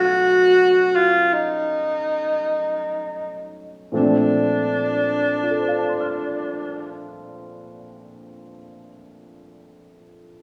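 A breathy tenor saxophone carries the melody in this brief, romantic jazz ballad, its mellow, whispered subtone shaded with vibrato, soft attacks and scooped notes as it moves between D4 and F#4 until about 7.0 seconds. Beneath it, a concert grand piano supplies the accompaniment from the start through 10.4 seconds, ranging from Bb2 up to F6 with deep bass and long sustain. The pulse is very slow, around 40 to 53 BPM in 4/4 with a swing feel on the eighth notes, and the tempo slows through the opening 3.9 seconds. The harmony moves from B7 to Bbmaj7 at 3.9 seconds, settling into Bb major as a new section begins. A recital hall reverb gives the intimate performance a roomy, church-like glow, and the recording, cut from a longer piece, is tuned slightly low at A4 = 437 Hz.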